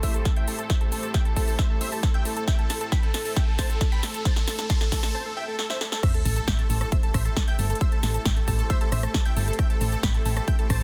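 Driven by a punchy, up-front electronic kick at 135 BPM in a straight 4/4, this uplifting trance passage in A minor feels soaring and emotional, cut from a longer piece and resting on a single Am7 chord. A big-room dance kit adds a layered snare, metallic hats, rim click, shaker and crash, with sidechain pumping and high-pass filtering on the hats, cymbals and percussion, while a round, dark FM bass with a fast attack holds the low end between G1 and A1. The lead is a huge, thick supersaw built from detuned unison saws with a sub octave, noise layer and vibrato, pushed through a low-pass filter and dub echo, while a bright, detuned unison pluck with a filter sweep carries a second line high above it in the background. A lush pad of slow-attack sawtooth and square-wave chords, coloured by chorus and phaser, sits underneath, and sidechain pumping makes the pad, pluck, lead and bass breathe with the kick. 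A drum fill drives the build-up, a background riser climbs from 2.6 s, a short break arrives at 5.1 s, and the drop lands at 6.0 s with an impact, all set in digital ambience and a dense, heavily limited modern master.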